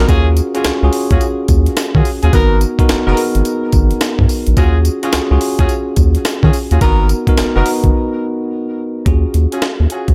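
Set in a digital ambience, this slick, confident new jack swing excerpt rides a swung sixteenth-note feel as a breakbeat sampler-style kit, gritty and compressed with a thumpy kick, high-tuned snare, hi-hat and tambourine under gated reverb, drives up front beside a round, deep analog bass. A bell-like tine electric piano carries clean, bright accompaniment over minor eleventh and ninth chords, while a dark horn section punctuates with smooth-topped, jazz-style stabs touched by light vibrato and delay. A break arrives at 7.9 seconds before a new section opens at 9.1 seconds.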